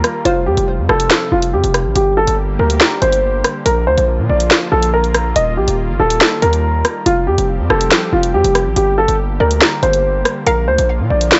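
A dry, gritty cassette-tape sound with a dulled top end frames this cold, ominous half-time drill excerpt, where a dark, mellow baby grand piano carries the melody through a low-pass filter and tape echo over a smooth, warbling detuned sawtooth pad and a heavy, aggressive distorted 808-style bass, while an electronic kit with a sharp snare, finger snaps, hi-hat and rim click sits up front and a hollow, bouncy square pluck with chorus flickers in the background at 0.0 seconds and again from 9.4 seconds.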